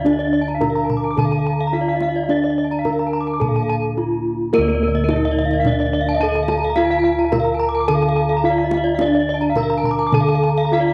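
Balinese gamelan in D pelog at 107 BPM, brilliant and shimmering, in a fragment cut from a longer piece: a wooden-mallet bronze metallophone carries the melody over round, up-front bossed gongs in the bass, while a bright, airy horn-mallet metallophone and a quieter, boxy one play arpeggios, their paired tuning throwing off shimmering beats through a cassette-tape haze, as a tight, soft-handed kendang sits in the background of a homemade cassette recording bathed in moderate spring reverb.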